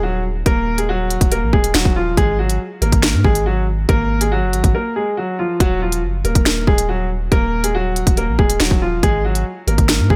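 Ominous and dark, this drill excerpt moves at 140 BPM in 4/4 with a heavy half-time feel, centred in Eb minor and tuned slightly below standard pitch. A clear concert grand piano carries the melody up front, its open tone and deep bass softened by a low-pass filter and trailed by digital delay, while a fingerpicked Celtic harp rings faintly beneath it only until 1.6 seconds. A long, sustained 808-style bass anchors the low end with a deep, mellow sine tone that hits with a fast attack and then decays. The electronic drill kit enters at 0.5 seconds, up front with a hard-clipped kick, sharp snare, crisp hi-hats and finger snaps, re-recorded in a large room for extra heft. A brief break around 4.7 seconds interrupts the groove, and the harmony moves from Ebm through Gbadd9 to Ebmadd9 and back to Gbadd9, all set in a digital ambience.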